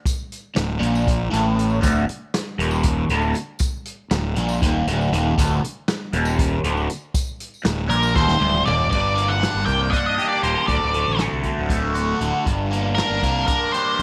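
Psychedelic rock in a hypnotic, trippy 7/8 at 237 BPM counted in eighths, set in D phrygian dominant and cut from a longer piece. A vintage acoustic drum kit with dark cymbals, a punchy kick and a rolled-off top drives the groove from the start, joined by a jingly tambourine sitting close and dry in the background until 8.7 seconds. From 0.6 seconds a bright, double-tracked overdriven guitar carries the riff through a phaser, anchored by a round, fuzzed fingered electric bass, both placed up front. The opening rests on a D5 power chord, then a drum fill leads into a new section at 8.9 seconds, where the harmony moves between Gm and D. Just before that turn, at 7.9 seconds, an octave-fuzz lead guitar enters with a picked, distorted melody coloured by slapback echo, all set in a studio reverb.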